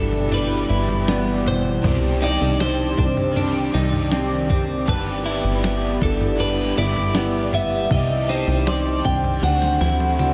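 A dreamy mix soaked in a wet plate reverb opens this floating, blissful dream pop excerpt in G major, moving at 79 BPM in a straight 4/4 over chords that sway between G6 and Cmadd9 before landing on D7. A twangy twelve-string electric guitar carries the melody through phaser and analog delay, framed by a biting overdriven guitar with harmonic tremolo and ensemble chorus, a warbly, nostalgic tape-like pad of detuned sustained chords, clean picked arpeggios on a compressed electric guitar with subtle chorus and delay, and a punchy, up-front plucky analog bass. A clean 12-bit drum machine with a thumpy kick and fat snare comes in at 0.1 seconds and plays a fill from 9.4 seconds, while a very quiet, pure FM synth bell adds texture from 4.9 to 9.8 seconds.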